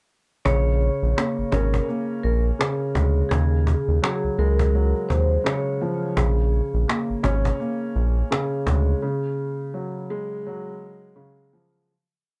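A round, deep analog bass sits up front in this dark, tough boom-bap hip-hop piece at 84 BPM in Bb minor, playing a looped line with muted ghost notes and chromatic approach notes over a woody, vintage cajon beat with a hard kick and backbeat snare, while a mellow upright piano repeats a rising and falling eighth-note arpeggio like a sampled loop through Bbm7 and Ebm11. A metallic, ringing vibraphone with slow motor vibrato and analog delay adds a short looping melody until 5.8 seconds. From 9.0 seconds the bass and cajon stop, leaving the piano alone over Dbadd11 as the piece fades out in a small, dark room.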